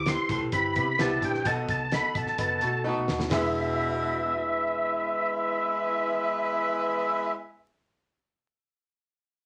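A straight 4/4 pulse at 130 BPM drives this urgent, uptempo 1960s-style soul excerpt, cut from a longer piece, with a cloth-damped drum kit thudding out hi-hat, tight kick and fat snare until a fill from 2.8 to 3.3 seconds, after which the drums stop at 3.4 seconds. Up front, a clear tonewheel organ carries the melody in a high register, its key click showing through chorus vibrato and a slow rotary speaker, while a dark, foam-muted fingered electric bass pushes round, punchy notes underneath. A concert grand piano with deep, natural body fills in the accompaniment, and a baritone saxophone with smooth top and vibrato works a low riff until 4.7 seconds. A loose, jazz-style horn section in octave doubling adds a second line from 0.8 seconds on, its tone thickened by tube saturation, and a picked electric guitar at the edge of break-up slips in a brief compressed riff between 2.4 and 3.3 seconds. 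The harmony moves from Cmaj7 to B7 and lands on E7 as the second section begins, all set in a wet, short studio reverb with vinyl crackle riding over the mix.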